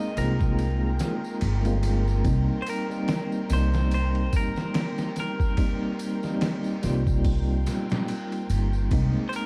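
A slow, swung 4/4 groove at 72 BPM sets a brooding, dark trip hop mood in C minor. The sampler-style drum kit enters at 0.2 seconds, pitched down, muffled and overdriven, with a thumpy kick, a medium-tuned snare, hi-hat and ride cymbal, while a compressed, saturated tambourine sits in the background. An up-front upright bass plays pizzicato in a woody, growly low register from 0.2 to 9.1 seconds, its tube saturation adding bite. Above it, a bell-like tine electric piano chimes clean and direct with tremolo, a twangy picked electric guitar carries the melody through tape echo and vintage 12-bit sampler grit, and a mellow string machine cello pad with ensemble chorus holds sustained chords far back. A breathy, wind-like tuned noise layer drifts high in the background, and the dark production with vinyl crackle moves from Abadd9 to a long stretch of Cm7 before returning to Abadd9 in this short excerpt from a longer piece.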